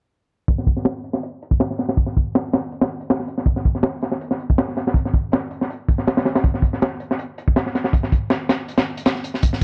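The sound is dry and close, with little reverb and a low-pass filter dulling the whole mix, so the top end feels rolled off and muffled. This short drum and bass excerpt, cut from a longer piece, runs at 161 BPM in 4/4 with a light swing on the sixteenths, giving it an atmospheric yet frenetic mood. The only part is a crunchy breakbeat drum kit, heard from 0.5 to 9.6 seconds, with hi-hat, a tight kick and a high-tuned snare. The kit sounds acoustic and up front, recorded in a small room, with a dark, gritty, saturated character that stays smooth rather than harsh. Low-pass filtering shapes the kick, hats, snare and room sound, and a filter sweep runs across the drums for the whole passage.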